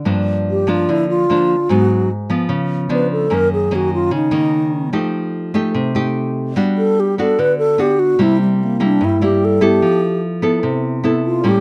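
A dark, full-bodied fingerpicked nylon-string guitar opens this romantic, sophisticated bossa nova fragment, and at 0.5 seconds a mellow wooden-headed alto flute takes the lead with an airy, slightly unsteady tone, soft attacks and vibrato over a progression moving from Gm7 through C#7b9 to Fmaj9#11, both instruments captured up front in a close, detailed and nearly dry room.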